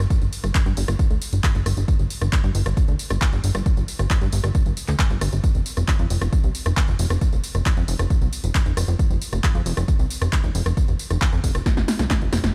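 Uplifting trance at 135 BPM in a straight 4/4, this short cut from a longer piece sits squarely in a drop across its full 12.5 seconds, with a soaring, bittersweet mood. A plucky analog bass carries the low end from F1 to G2, up front and funky, its fast-attack filter pluck and decaying tone built from sawtooth, pulse and sine waves with ring modulation and wave-folding, all pumping under sidechain compression. An electronic kick drum, dry and overdriven with a punchy thump, sits up front from 0.1 seconds. A punchy analog drum machine adds handclaps, hi-hat, rim click, snare and tambourine, its overdriven snare punchy and dry, and the passage closes with a drum fill starting at 11.7 seconds. The digital ambience suggests a big sound system playing in a bare stone room, lending a reverberant space to the mix.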